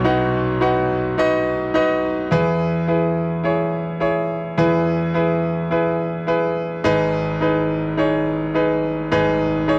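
Driving and dramatic, this short pop excerpt runs at 106 BPM in a straight 4/4 and is played entirely by a solo concert grand piano, tuned slightly sharp to A4 = 445 Hz and spanning from G#1 to F#5. The piano sounds brilliant and polished, with deep bass, short sustain and an up-front presence, set in a dry, close 1970s-style studio recording touched by light reverb. The harmony moves from B to E at 2.3 seconds and settles on G#m at 6.8 seconds.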